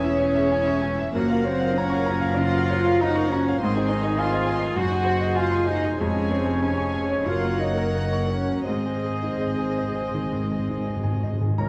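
In a rubato 4/4 that drifts between 80 and 106 BPM, this lush, lyrical classical passage, cut from a longer piece, moves through a rich chord progression that opens on C#m/E and settles onto Ab by 8.7 seconds. A clear, intimate baby grand piano carries the melody across a broad range, its action noise audible and natural. Alongside it a violin section doubles the melody with a soft-attacked, floating sul tasto tone, while a second, very quiet violin section joins the oboe, clarinet and flute on second lines: the oboe is vintage with vibrato, the clarinet dark and roomy, the silver flute airy and straight-toned. A lush, woody viola section with vibrato and a bassoon with light vibrato fill the accompaniment, a distant, tight French horn section holds sustained chords in the background, and distant cello and double bass sections anchor the bass. At 8.7 seconds timpani enter with an articulate fill on calf heads struck with hard mallets, all set in a moderate scoring-stage reverb within a dark, warm production.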